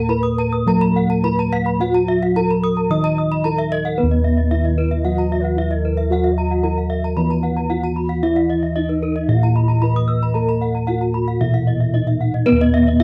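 This brilliant, ceremonial Balinese gamelan excerpt in Eb pelog moves at a steady 113 BPM in a straight 4/4 and is cut from a longer piece. Dark, round bossed gongs sit up front in the bass, their smooth bronze tones beating beneath a melody on a bronze metallophone struck with padded disc mallets, mellow and soft, its paired tuning producing shimmering beats. In the background, a second metallophone played with a wooden mallet adds a ringing accompaniment. Two more metallophones spin arpeggios with horn mallets: one sounds boxy, as if in a small room, while the other is bright, close-miked and full. After the music shifts into a new section at 4.0 seconds, an airy bamboo bansuri enters at 5.0 seconds with a soft attack and vibrato, sounding distant behind the bronze until it drops out at 10.8 seconds. The whole recording is dry and close, with little reverb, in the manner of a 1970s studio.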